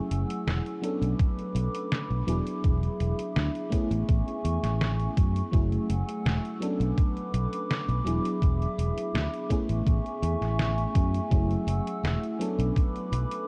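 Nostalgic and woozy, this vaporwave excerpt drifts at 83 BPM in a straight 4/4 and A major, circling through F#m9, Bm9, E7 and Amaj7 in a repeating loop. A lush, dreamy FM electric piano with a soft pad layer carries the accompaniment, its dark, full-bodied tone given a gentle shimmer by tremolo, subtle chorus and analog delay. Behind it, a warbling, lo-fi pad made of detuned square and triangle tones sustains the chords with slow attacks and long releases, softened by chorus and its own built-in reverb. A fingered electric bass sits up front with a direct, warm sound, while a detuned 8-bit drum machine supplies hi-hat and a medium-tuned snare. An electronic, thumpy kick joins at 1.2 seconds, prominent in the mix, and the whole excerpt has the dry, tape-warm character of a cassette tape recording.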